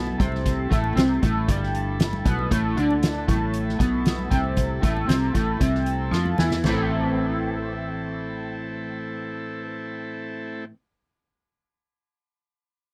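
A dry, close recording with a 1970s studio character frames this hypnotic, dark psychedelic rock excerpt, cut from a longer piece and resting on an A minor chord in a straight 4/4. Up front, a bright, clean electric guitar plays a picked riff, double-tracked and treated with flanger, while a buzzy vintage combo organ holds sustained chords beneath it with a light vibrato. A round, foam-muted fingered bass adds dark low end throughout. The drum kit, played with soft mallets on drums and cymbals, has a fat snare and boomy kick that sit prominently in the mix, joined by very quiet, high-tuned congas struck with hard hands. After a drum fill from 6.1 to 6.6 seconds, the drums and congas drop out by 6.9 seconds, leaving guitar, organ and bass to carry the closing section until the cut at 10.7 seconds.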